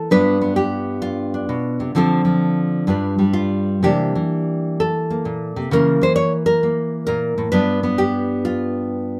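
A solo nylon-string guitar opens this short fragment of a longer solo jazz piece, fingerpicked with a full-bodied, deep classical tone that sits up front. The mood is playful and swinging, moving at 131 BPM in 4/4 with a swung eighth-note feel that loosens into rubato. Across its 9.2 seconds, the guitar ranges from G2 up to Db5, moving through G7, Dm7 and back to G7 before settling on a lush C13. A rootless C7b9 adds a tart, colorful tension before the passage returns to G7 near 7.5 seconds. Close, detailed microphones and light reverb keep every string clear and intimate, with the instrument tuned slightly under standard pitch at A4 = 439 Hz.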